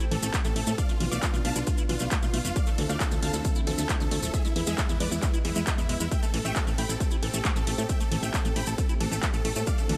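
Bittersweet and emotional, this uplifting trance excerpt in A minor runs at 135 BPM over an Am7, Bdim, Dm7 and E progression, with a huge, bright, detuned supersaw lead carrying the melody through diffuse ambient delay and sidechain pumping, a heavy, up-front layered electronic kick and a round, mellow FM bass anchoring the low end, a squelchy, resonant acid bass weaving phased arpeggios in the background, a lush, warbling vintage pad sustaining chorused chords behind them, and a tape-warm analog drum machine with handclaps, hi-hat and ride joined by grainy maracas, all set in light digital reverb.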